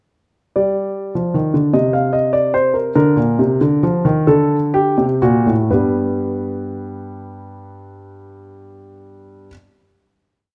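Driving yet contemplative, this brief baroque-style two-part invention for solo grand piano moves in 6/8 at 40-51 BPM (dotted quarters), its imitative counterpoint running from G5 through Cm, Bbadd9 and D7 while it slows down from 0.6 s to 7.2 s. The piano sounds intimate, natural and up front, with audible action noise caught by close, detailed microphones in a moderate recital hall reverb. After the exposition, a final G chord arrives at 5.7 s and rings until 8.7 s.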